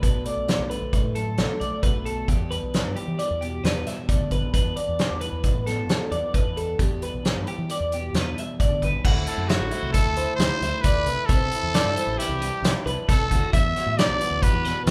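In a straight 5/4 at 133 BPM, a loose indie drum kit drives this intricate, wistful slice of math rock and midwest emo in E minor, its punchy kick, fat snare and dark cymbals sitting up front yet roomy and a little distant. A deep dub bass, fingered and round, anchors the low end. Above it, a small old amp gives one electric guitar a slightly broken-up, picked accompaniment, while a bright, twangy twelve-string spins clean arpeggios higher up. The opening section moves through Bm7, Em7 and E7sus4. At 9.0 seconds the harmony shifts to D9, C69 and Em9, and at 9.3 seconds a growling trumpet enters up front with a raspy, gritty pop-style solo touched by light vibrato. The band sounds as if playing live in one room with light reverb, and the passage is cut from a longer piece.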